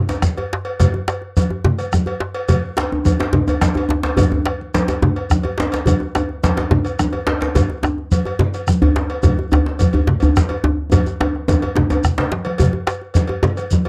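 Powerful and earthy, this West African drum ensemble groove moves at 142 BPM in a straight 12/8, captured in a dry, close studio sound with a 1970s character and cut from a longer piece. A round bombo anchors the low end beside two djembes, one tight and cracking that drops out until 2.8 s and stops at 12.3 s, the other medium-tuned and up front, while bright, damped congas, a grainy shekere and a metallic cowbell set further back fill out the weave. A drum fill from 10.9 s leads into a brief closing section at 12.6 s.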